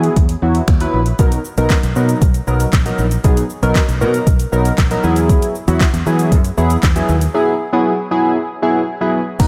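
A straight 4/4 groove at 117 BPM drives this summery, carefree dance-pop excerpt, built on a smooth, electronic R&B kit with a soft kick, fat snare, metallic hi-hats, handclaps, finger snaps, shaker and crash, sitting up front with the ambience of a large room. A punchy, foam-muted fingered electric bass pumps with sidechain compression, while a glossy, retro chorused polysynth mixing pulse, sawtooth and triangle tones with a sub octave and filter sweep holds sustained, mellow chords up front. The harmony moves from Eadd9 to Bmaj7 at 1.2 seconds and returns to Eadd9 at 5.0 seconds, all under a light reverb.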